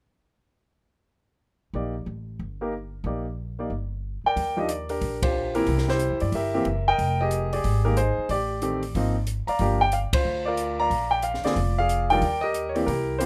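An up-front concert grand piano carries the melody in this relaxed, warm swinging jazz trio excerpt, its tone natural with deep bass, joined by a woody, thumpy pizzicato upright bass whose steel strings give it a bright edge. The acoustic drum kit, heard in a studio room, enters at 4.4 seconds with dark cymbals, a high-tuned snare and a boomy kick, sitting lower in the mix. The band hits accents together at 5.2 and 10.1 seconds over rich jazz harmony, all wrapped in light reverb.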